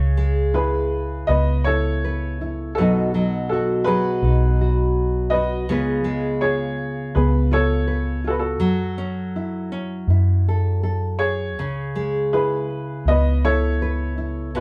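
A steady, straight 4/4 pulse carries this short passage from a longer acoustic folk-pop ballad, and its mood is intimate and reflective. An upright piano carries the melody in its middle register with a clear, woody, slightly boxy tone and short sustain. Beneath it, a thumb-plucked nylon-string guitar provides full-bodied classical accompaniment, and a vintage fingered electric bass adds a dark, round, foam-muted low end. All three instruments sit up front and play throughout, sounding like a band performing live together in one room, with a moderate studio reverb. The harmony moves from C#m7 through B7 and C#7 to F#m7 before settling back on C#m7 at 11.6 seconds.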